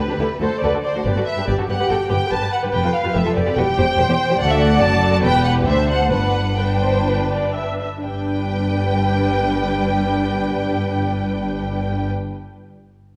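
Distant, lush violins carry the melody over a second violin line with expressive portamento in this spirited, lively excerpt of a quick classical-period movement for string orchestra in G major at 120-146 BPM, where smooth, even violas, expressive symphonic cellos and focused double basses fill out the harmony with bowed vibrato, the rubato pace slowing from 3.6 to 8.0 seconds before a new section arrives, all set in the wet reverb of a scoring stage.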